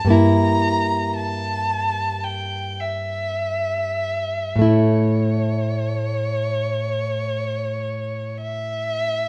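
A rich, expressive bowed violin melody with vibrato, portamento and a soft attack opens together with a fingerpicked classical nylon-string guitar accompaniment in this solemn, elegiac romantic duo, both up front in a moderate recital-hall reverb, drifting in a slow rubato 4/4 at 46-58 BPM from an Edim/G chord to A at 4.7 seconds in a brief passage cut from a longer piece.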